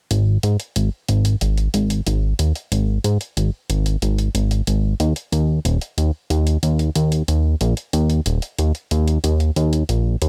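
A straight 4/4 pulse at 92 BPM drives this moody, cinematic synthwave clip, cut from a longer piece, with an overdriven, sampler-style electronic hi-hat that carries a small-room character sitting behind the bass. Up front, a fat, detuned sawtooth analog bass with a fast attack holds sustained notes from D#1 to G#2, a filter sweep running through it from 0.1 to 10.3 seconds. The mix is dry, with little reverb.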